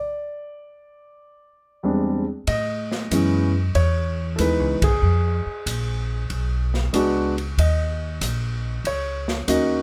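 Smoky, late-night jazz piano trio swinging at 94 BPM in 4/4, where a mellow, deep-toned concert grand plays up front alone until upright bass and an open jazz kit enter at 2.5 seconds, the woody pizzicato bass and the kit's boomy kick, medium-tuned snare, hi-hat and dark ride cymbal joining the piano for a band accent at 4.7 seconds in a fragment cut from a longer piece and bathed in light reverb.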